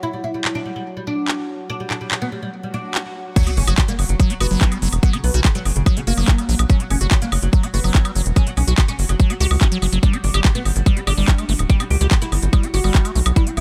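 A woody, plectrum-plucked fretless oud carries the melody through this hypnotic, alien psychedelic trance excerpt at 144 BPM, its phaser, delay and sidechain pumping set over a background drone of moving, resonant overtones with chorus and its own reverb. Crisp-hatted dance drums with handclaps, woodblock and crash arrive at 0.4 seconds, and a swell rises into the drop at 3.4 seconds, where a sub drop hits and an up-front tight kick enters. Alongside it come a punchy, driving sawtooth sequencer bass and a squelchy, liquid acid riff with filter sweeps, all in a dry, close mix that moves from F#5 to G5 at 10.0 seconds.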